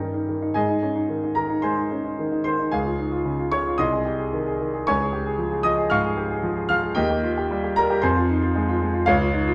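A clear concert grand piano opens alone on an Eb/G chord, its deep bass anchoring a stormy, agitated passage that spans C2 to F6 and moves through Ab, Db and Ebadd9 before settling on Fm around 8.0 seconds. Played with rubato in a virtuoso classical study style, the piano sits up front with an open tone, set in a wet recital hall reverb. The production is dark, and this 9.5-second excerpt is cut from a longer piece.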